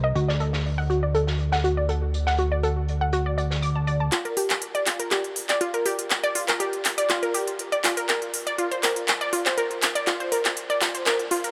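Progressive house at 121 BPM in G minor, dreamy and bittersweet, cut from a longer piece: a glassy, crystalline wavetable pluck spins arpeggios throughout with chorus and delay, while a fat, detuned analog bass holds low notes and an unplugged acoustic kit played with bundle sticks adds quiet hi-hat and snare in a studio room. At 4.1 seconds the bass stops and an up-front deep house kit of smooth hats and handclaps takes over for a build-up with a drum fill, as the harmony moves from D to Gm7 and then Bbadd9. A filter sweep on the pluck colours the opening, and light reverb lends a small-room ambience.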